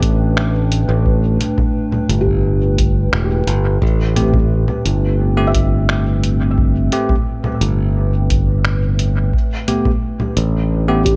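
Ambient dub at 87 BPM in A minor, this short excerpt cut from a longer piece drifts in a meditative, hazy mood over a steady, straight 4/4. A warbling, nostalgic pad built from detuned square, triangle and sawtooth tones holds sustained chords throughout, its slow attack and long release coloured by chorus, phaser and its own reverb, while the harmony moves from Gadd9/A to Am7 at 3.8 seconds and back. Underneath, a growly, up-front fingered electric bass sits low and prominent beside a deep, tape-warm analog kick, with a muffled, pitched-down sampler kit of congas, finger snaps and hi-hat trailing dub echo. A soft, felt-muted upright piano enters at 2.2 seconds with intimate arpeggios, its audible action noise and tape echo adding to the dusky feel. From 4.2 seconds a bell-like, clean tine electric piano adds stabs carrying dub echo. The production is dark with light reverb, giving the whole a hushed, lo-fi glow.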